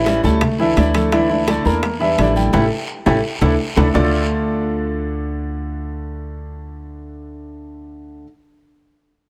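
A clear, smooth concert grand piano plays arpeggios in this sultry Cuban son and guajira cut at 170 BPM in D minor, sitting up front beside a woody, thumpy pizzicato upright bass and a fingerpicked flamenco guitar with fresh strings. Ringing congas, tight high-tuned bongos, dry metal-shell timbales and a raspy guiro drive the groove until 4.0 seconds, with a drum fill and band accent from 2.5 seconds. The harmony moves from Dsus2 through Em7b5 and A7 before settling on D minor as a second section opens, all under light reverb.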